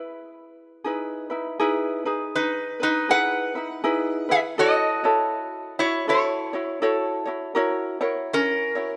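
Languid and relaxed, this Hawaiian excerpt sways at 81 BPM in 4/4 with a lazy swing on the eighth notes, set in E major and tuned a hair sharp of standard pitch. A lap resonator guitar carries the melody up front, its slide tone metallic and nasal, picked with fingerpicks across a range from C#4 to F#5. Alongside it, a ukulele supplies a light, fingerpicked accompaniment, also bright and close, sitting just behind the lead in level. Both instruments play together from start to finish, moving from a brief opening section into a longer second passage at 1.6 seconds, as the harmony drifts from Emaj7 to A6 at 4.6 seconds and on to F#7. A lush hall reverb lends a soft, lingering halo to the rough home-demo sound of the mix.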